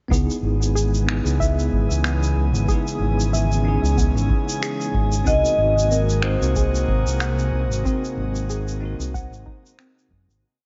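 A laid-back 93 BPM swung 4/4 groove in C# dorian anchors this wistful sunset chillout piece, with a deep soft electronic kick, airy shaker and finger snaps, and an overdriven, punchy fingered electric bass up front under bell-like tine electric piano chords with syncopated pushes, a breathy chorused pad, a dark round pluck arpeggio looping six steps against the bar, and a glassy drifting harmonics texture, the keys, pad, pluck and texture bathed in shimmer reverb over C#m7 until a metallic, ringing vibraphone motif enters at 5.3 seconds on G#7 before the fade-out from 7.0 seconds.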